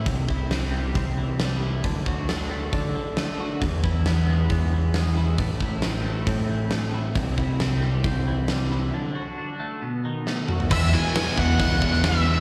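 Restless and anthemic, this quiet-loud alternative rock excerpt at 135 BPM opens with a bright, twangy twelve-string electric guitar playing arpeggios through phaser and slapback echo. Beneath it sit a growling, overdriven picked bass up front and a huge arena drum kit with a fat snare and punchy kick, all heard as a live gig through the venue's PA in a reverberant hall. The chords move from C through D, E, Am and B7, and after a break and a drum fill, at 10.7 seconds the music lands on E as a dark octave-fuzz lead guitar takes the melody up front, joined in the background by a biting overdriven guitar riff and a distorted fuzz guitar riff, all three with slapback echo.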